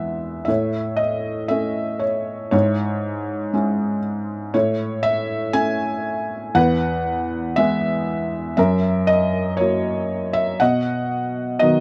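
A close, detailed and nearly dry recording of a felt-muted upright piano, soft and intimate with a mellow, thin-felt tone sitting up front, carries this melancholic, reflective classical excerpt, played solo with lyrical rubato over chords moving from A through C#m/G# and E to F#7 and B, as if cut from a longer piece.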